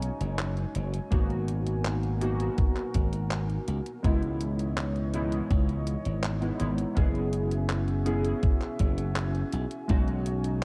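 Warbling lo-fi synth keys with lush chorus, 12-bit sampler grit and tape echo open this hazy, melancholic vaporwave excerpt over a mellow, slow-attack tape-like pad, a bright, punchy glassy slap bass and a detuned 8-bit drum machine of handclaps and hi-hat, with a thumpy electronic kick entering up front at 1.1 s and stopping at 10.0 s, set in dark cassette-tape production with light digital ambience as the chords move from a rootless B69 through G#m9, C#m9 and F#9sus4 back to B69.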